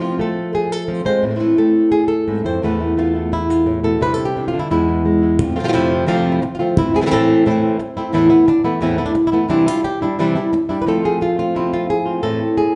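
In a straight 4/4 at 175 BPM, this mournful, intense flamenco passage, cut from a longer piece, cycles through F, Am, Esus4, Cadd9 and E. Two fingerpicked acoustic flamenco guitars share the track: one carries the melody up front, and a quieter one sits in the background with stabs, both with audible finger squeak. They sound like a live performance in one room, with a warm tone, a soft top end and a lush large-studio reverb, and the harmony returns to F at 10.9 seconds before the playing stops at 12.8 seconds.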